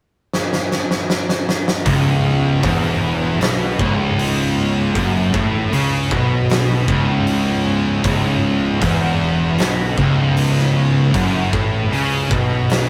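Heavy and ominous, this stoner-doom metal excerpt opens with an oversized, low-tuned acoustic drum kit playing a fill from 0.3 seconds, its fat snare, punchy kick and hi-hat gritty and up front in a pumping big room, before a bright, double-tracked high-gain guitar, two thick fuzz guitars sitting back in the mix, one dark and one warm, and a growly overdriven fingered bass crash in at 1.9 seconds on a C# minor riff, all captured with the rough feel of a rehearsal room.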